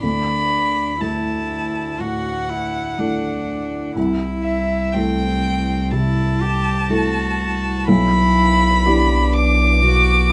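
A rich, up-front violin played by a single player leads this short neoclassical passage for piano and strings, carrying a reflective, longing melody with light vibrato, a soft attack and an airy sul tasto bow. Beneath it a single cello plays a close, intimate second line, also bowed sul tasto with a gentle vibrato, while a bowed double bass sits low and distant with a pure, floating tone. The felt-muted upright piano supplies a dark, boxy accompaniment, its thick felt giving a mellow, hushed sound, and the soft noise of its action is audible. The four-beat time moves with a rubato feel, and the harmony drifts from Dadd9 to Am/C at 4.0 seconds and Em7/B at 7.9 seconds. A light reverb surrounds the ensemble through this 10.3-second fragment of a longer piece.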